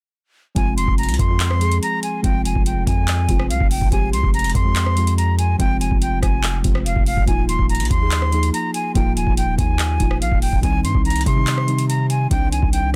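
Booming, overdriven analog drum machine hits with a deep kick, metallic hats, handclaps and rim clicks, up front and re-recorded in a small room, driving this melancholic, hard-hitting half-time trap excerpt alongside a long, decaying sine-toned 808 bass, an airy, unsteady silver concert flute melody with vibrato and tongued notes, and muted, felt-like synth keys with a chorused, dark, intimate glow, all through a dry, dense, heavily limited modern master moving from Fm to Ebsus2 at 7.3 seconds and Cm at 10.6 seconds.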